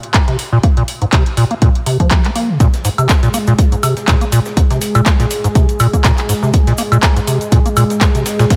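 A trippy, playful slice of acid house with light reverb and a digital ambience, cut from a longer piece and moving at 122 BPM in 4/4 with a 55% swing on the sixteenths. An overdriven electronic kick sits dry and punchy up front, while a booming analog drum machine adds handclaps, woodblock and metallic, tape-warm hats. A squelchy, hollow square-wave acid bass carries the riff between Ab2 and Bb3, its resonant filter pluck striking with a fast attack and then decaying, all shaped by sidechain pumping. At 2.6 seconds a dark, detuned sawtooth pad slides in with sustained chords from Ab3 to Ab4, given chorus, a sub octave and the same pumping motion. Alongside it come a very quiet, gritty breakbeat kit with hi-hat and a medium-tuned snare recorded in a small room, plus a grainy, bright egg shaker kept close in the background.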